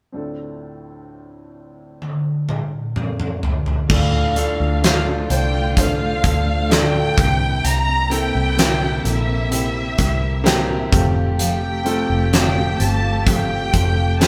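A clear, woody upright piano opens this heartbroken, emotional D minor pop ballad at a slow 64 BPM, a huge arena drum kit with a fat snare and punchy kick enters up front with a fill at 2.0 seconds, and from 3.9 seconds a distant, lush violin section carries the expressive melody with vibrato and a soft attack over background bowed strings gliding with portamento, a very quiet fingerpicked dreadnought guitar playing arpeggios, and a dark, round, foam-muted electric bass, the band sounding live in one room with light reverb.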